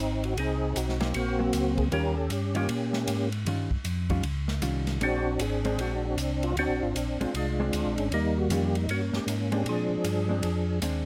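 A round, dark tonewheel organ opens this swinging, bluesy soul jazz organ trio clip. One organ voice carries the percussive melody and another lays down a mellow bass line, both up front and colored by chorus vibrato and a slow rotary speaker. An airy acoustic big-band drum kit follows at 0.2 seconds with ride, hi-hat, medium-tuned snare and punchy kick. At 1.0 seconds a compressed, fingered hollow-body electric guitar joins with accompaniment over ninth chords on Ab, Eb and Bb, all captured by close, detailed microphones in a dry room.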